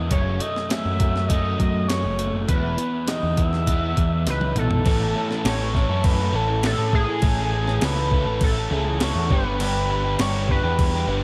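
A light reverb and digital ambience frame this short indie rock cut, which moves at 101 BPM in a straight 4/4 with a wistful, jangly mood. Up front, a gritty, tape-warm breakbeat sampler-style kit pairs a thumpy kick with a medium-tuned snare, hi-hat, toms and crash, and plays a fill from 4.3 to 4.9 seconds into the second section. A growling picked electric bass, overdriven and prominent, anchors the low end while two bright overdriven guitars play riffs: one compressed with slapback echo, the other crunchier, set in the background, and treated with ensemble chorus and slapback echo. An edgy, tearing sync lead with sawtooth bite, vibrato, chorus and slapback echo carries the melody from 0.1 seconds. Beneath it all, a very quiet, mellow string machine voiced as cellos holds full-bodied vintage chords, moving from F#madd9 and Emaj7 to A and finally Gmaj7.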